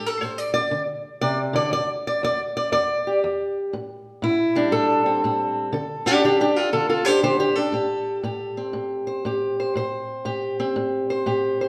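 A loping swung feel in four drives this short, mournful slice of acoustic country blues, cut from a longer piece and played by a lone fingerpicked steel-string guitar. The guitar sits up front with a dark, boxy parlour tone, spanning low bass strings to higher notes as the chords move from Csus2 and Em7 into Am7 and Dm. A recital-hall reverb lends the soulful playing a churchlike sense of space.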